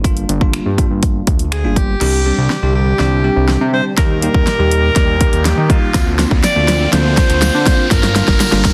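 A straight 4/4 feel drives this confident dance-pop excerpt, with a punchy, overdriven pop drum kit up front laying down kick, fat snare, hi-hat, finger snaps and crash. A thick, saturated analog bass with a detuned sawtooth edge and a filter pluck pumps against the kick, while a bell-like tine electric piano with phaser sits in the background, pumping too. A bright alto saxophone enters at 1.5 seconds to carry the solo melody, pop style with light vibrato and a dub echo trailing its lines. From 2.0 seconds a drum fill and build-up take hold as a shimmering, chorused pulse-width pad slips in very quietly beneath, and an electronic riser rises out of the background from 3.9 seconds. A jingly tambourine joins at 5.9 seconds, distant in a large room, as the chords move from Gm7 through Csus2, Eb and Bbadd9/D back to Gm7 under a dense, heavily limited modern master with light digital ambience.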